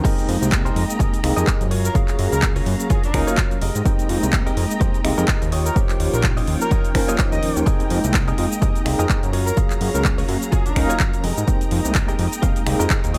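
A mellow horn melody, an overdriven, gritty electric piano with fast tremolo and phaser, a clean, twangy direct guitar riff, and bright, lush strings in the background all open this funky, groovy filtered disco house excerpt over a punchy, up-front electronic kick. A fat, detuned sawtooth bass with tube saturation and filter sweep joins at 0.3 seconds, while the house kit adds hats, shaker, finger snaps, handclaps and crash, with sidechain pumping breathing through most parts and lo-fi 12-bit grit on the guitar and strings. The chords cycle through Fm11, Gbmaj7 and Eb9 in a dry, close sound, and the horns, coloured by digital delay, drop out at 11.0 seconds.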